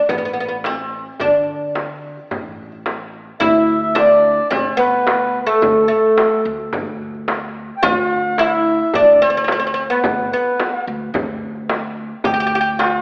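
With an AM radio sound and the moderate reverb of a church or concert hall, this festive passage, cut from a longer piece, is played by an Arabic maqam ensemble in D maqam rast at 109 BPM in a straight 4/4. Up front, the bright, woody oud carries the melody, its fretless double strings plucked with a plectrum. Beneath it, a pizzicato upright bass with steel strings adds warmth. Two hand drums keep the pulse: a large, deep clay-shell darbuka with natural skin sits in the background with a vintage, band-limited tone, while a frame drum played with soft hands sounds close and dry. At 3.4 seconds a reedy accordion enters with a second line above the oud, its single-reed tone round, dark and smooth.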